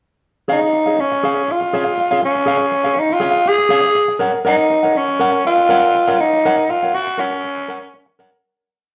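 A straight 4/4 disco groove at 121 BPM drives this short, glamorous and celebratory piece in D-flat major, tuned to A4 = 443 Hz and built as a pre-chorus from 0.5 seconds. A mellow, clean, dark electric guitar plays choppy sixteenth-note disco accompaniment, fingered and up front, while a growling tenor saxophone carries a jazz-style solo melody built from song-like motifs. The sax has a mellow, breathy, raspy subtone with vibrato, scooped notes and a soft attack that stays smooth at the top. The harmony sits on D-flat before moving to E-flat minor nine over D-flat at 4.2 seconds. The band plays live together in a large studio with a lush reverb, and the music fades out from 6.4 seconds.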